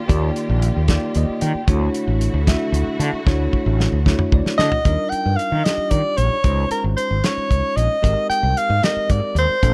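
A breathy soprano saxophone takes the soaring melody from 4.6 seconds, scooping into notes with vibrato and a soft subtone over bell-like electric piano fills, a growly fretless bass, a damped drum kit with a fat snare that fills from 3.3 seconds, and lush bowed strings that hold sustained chords until 4.8 seconds in this bright, dry excerpt of electric jazz fusion in 6/8 that moves through major-ninth chords.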